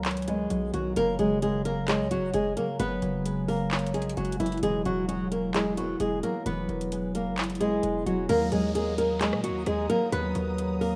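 A half-time trap groove of handclaps, metallic hi-hats and rim clicks underpins this brooding, melancholic hip hop fragment, where a distorted, heavy 808-style bass and a mellow, ringing fingerpicked concert harp behind a low-pass filter support an up-front flamenco guitar melody with finger squeaks and tape echo, until a dark, lush symphonic string section and a downlifter arrive in the background at 8.3 seconds, all in a rough home-demo mix with light reverb.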